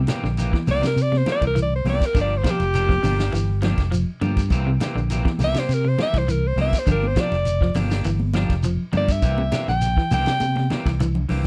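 A straight, driving afrobeat groove in 4/4 rides on a vintage drum kit with a punchy kick and rolled-off top, a round, up-front fingered bass, high-tuned congas with hard hands in the background and a grainy, mellow shekere, all circling hypnotically between C7 and Gm7. Two electric guitars at the edge of break-up fill the middle: one twangy and scooped, picking arpeggios in the background, the other playing stabs with a slapback echo. A bright, present alto saxophone with light vibrato solos up front from 0.7 seconds, and a drum fill arrives at 10.4 seconds in this dry, close 1970s-style studio recording, cut from a longer piece.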